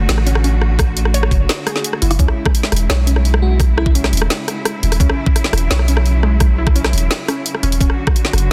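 Half-time drum and bass at 171 BPM in C# phrygian, dark and cinematic, cut from a longer piece: a lush, distant cello section holds sustained chords with sidechain pumping, while a warbling, lo-fi pluck spins arpeggios through chorus and tape echo in the background, above a deep, sine-toned 808-style bass that sits up front. The overdriven drum kit brings a woody snare with soft clipping and bright hats, joined by a knocking electronic kick that drops out between 1.8 and 2.2 seconds. A sparkling, bell-like FM electric piano briefly states a melody at 3.4 seconds through cassette tape and dub echo, all within digital ambience and a dense, heavily limited master as the chords move from D to C#m and back to D.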